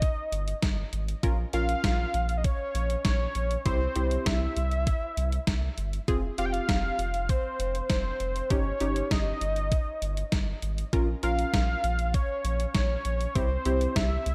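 A steady, straight 4/4 pulse at 99 BPM comes from a detuned 8-bit digital drum machine, its thumpy kick, medium-tuned snare and hi-hat sitting up front in gated reverb, while a round, deep analog bass holds the low end in this cool, melancholic synth-pop excerpt cut from a longer piece. A fat, detuned sawtooth lead with a sub octave, vibrato and tape echo carries the melody from the start, and at 1.2 seconds a punchy, funky polysynth comp with a filter pluck and chorus joins beneath it. The chords move through Eb/G, Bbm, C, F5 and Eb7/G in light reverb.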